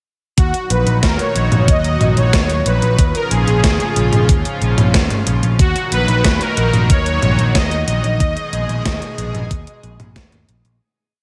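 Driving and moody, this short synthwave piece moves at 92 BPM in a straight 4/4, sitting in Eb minor as the chords pass from Ebm through Db and back before landing on Abm. A soft, smooth supersaw carries the melody in motif-based phrases, its detuned unison saws given a gentle attack and dressed in phaser, delay and shimmer reverb. Beneath it, a chorused pulse-width pad holds sustained chords with a slow attack, its bright, retro tone roughened by 12-bit sampler grit and pumping against the kick under its own shimmer reverb. A picked electric bass, warm and amped, jumps between octaves and pumps in step with the sidechain, while a thumpy, overdriven electronic kick drives the bottom. An 80s digital drum machine supplies closed hats, low toms and a gated-reverb snare backbeat with a crunchy, small-room edge, and the whole piece fades out from 7.3 seconds to its close at 10.8 seconds.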